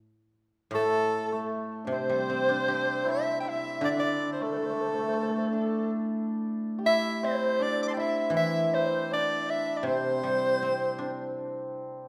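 A breathy soprano saxophone carries the jazz-style melody up front with vibrato, leading a graceful, wistful Chinese chamber ensemble piece at 79 BPM in a rubato 4/4. A shimmering hammered dulcimer, also up front, plays a second line. A silvery guzheng played with fingerpicks gives ringing accompaniment, and a hollow, airy large dizi with a buzzing membrane adds a distant second line in the background. The short passage, cut from a longer piece, runs from 0.7 to 12.1 seconds in the wet reverb of a church or concert hall.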